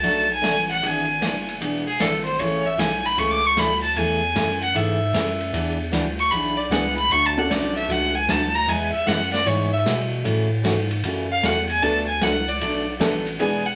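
Western swing country with a cheerful, playful lilt, this swung excerpt is led by a clear, focused fiddle solo with light vibrato that carries the melody from start to finish. A picked steel-string acoustic guitar with a full-bodied, fresh-stringed tone picks out the accompaniment over a round, deep bass and a natural big-room drum kit working hi-hat, ride and snare. A woody, slightly detuned upright piano with a worn character joins briefly at 6.7 seconds and again at 11.8 seconds, all set in a moderate studio ambience.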